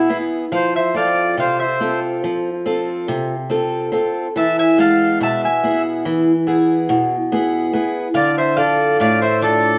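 Moving in a straight 9/8, this short cut from a longer Greek folk piece carries a dark, wistful mood as the chords shift from E to F and back, then settle on Dm near the end. A metallic, double-strung bouzouki carries the melody with some octave-doubled strings, while a reedy, hollow accordion sits up front with a second line and a boxy, ladder-braced acoustic guitar picks the accompaniment, its finger squeaks audible. The accordion and guitar carry a cassette-tape colour, and the whole home recording has light reverb and the feel of a small room.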